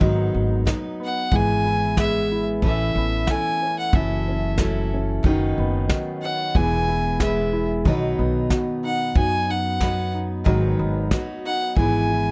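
A bowed fiddle carries the melody up front, its nasal, reedy gut-string tone with a smooth top entering at 1.0 s and staying in a high, narrow range. This is a pastoral, nostalgic acoustic folk passage for a small band in straight 4/4, cut from a longer piece. Beneath it, a full-bodied jumbo steel-string guitar is picked as accompaniment, while an upright piano, woody and natural, plays arpeggios. A pizzicato upright bass gives a thumpy low end, and a brushed drum kit sits up front with a punchy kick and a medium-tuned snare in a natural studio room, stopping at 11.9 s. The harmony moves through G#m7, Aadd9, F#m7 and Badd9/F# to E and B before returning to G#m7, and the sound is dry, closely miked and detailed, with a faint mains hum underneath.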